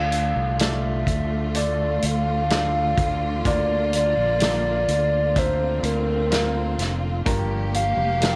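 Heartbroken and longing, this slow pop ballad excerpt in straight 4/4 moves from Dm to Bb, arriving on Gm7 near 7.3 seconds. A hollow, clarinet-like synth lead carries the melody throughout, its soft, mellow tone built from square and triangle waves with a noise layer, fast attack, sustained notes, vibrato and a chorus effect. Beneath it, a lush bowed string section holds expressive sustained chords, while a clear, woody upright piano plays accompaniment further back in the mix. A punchy fingered electric bass sits up front with a direct, amped sound, and a loose acoustic drum kit enters at 0.1 seconds with hi-hat, a tight kick and a medium-tuned snare, with a rolled-off top and a small-room sound. Light reverb and studio ambience frame the whole performance.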